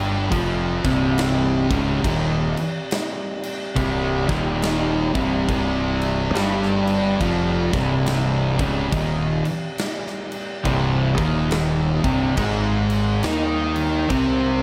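Set in a small room ambience, this heavy, hypnotic stoner and doom metal excerpt crawls along at 70 BPM in 4/4 with a swung eighth-note feel, rooted in C minor. Two thick fuzz guitars, dark and distorted, and a crunchy overdriven guitar, double-tracked and picked, grind through a low riff together in the background from the start, while a round, fuzz-soaked fingered electric bass adds weight down below. A big rock drum kit comes in at 0.3 seconds with a natural, acoustic sound, bright crash cymbals, a medium-tuned snare and a tight kick. From 2.0 seconds a deep, ominous drone rumbles behind the band, its detuned triangle and sawtooth tones swelling in slowly and trailing off in long, reverberant tails. The harmony sits on C minor until the riff shifts to an Ab power chord at 12.4 seconds.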